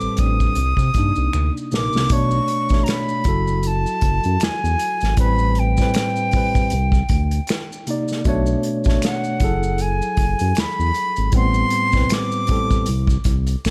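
A breathy, close-miked silver concert flute plays a straight-toned, expressive melody over a worn, slightly out-of-tune tine electric piano, a dark, sustained synth bass with a ring-modulated edge, and maracas and finger snaps set back in a live room, before an unplugged drum kit with a punchy kick and bundle sticks enters at 0.2 seconds and plays a fill from 1.3 to 2.1 seconds, carrying this sultry, smooth neo-soul R&B excerpt at a swung 78 BPM through minor ninth chords such as Am9, Cm9 and Bm9.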